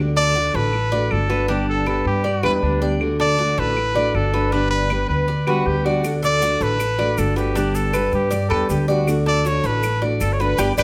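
Danceable and relaxed, this Cuban son and guajira passage in D major moves at 158 BPM, with an up-front clear trumpet singing the melody over woody, thumpy pizzicato upright bass, bright fingerpicked nylon-string guitar and metallic double-strung tres arpeggios, while a distant, roomy second trumpet adds scooped phrases from 2.4 seconds, claves tap in the background, grainy maracas join at 6.0 seconds, and a band accent lands at 10.6 seconds in a large studio reverb.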